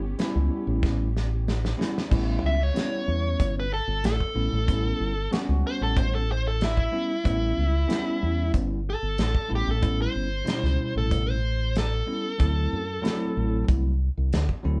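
A dark, overdriven lead guitar carries the melody and takes a solo from 2.1 seconds in this laid-back, soulful straight-eighth soul blues at 93 BPM in A mixolydian, set over a round, punchy fingered electric bass, a bell-like tine electric piano, an acoustic soul drum kit with a tight kick and a fill from 0.8 seconds, and a very quiet, woody bowed string section that stops at 2.1 seconds, the band playing live together in one room with light reverb.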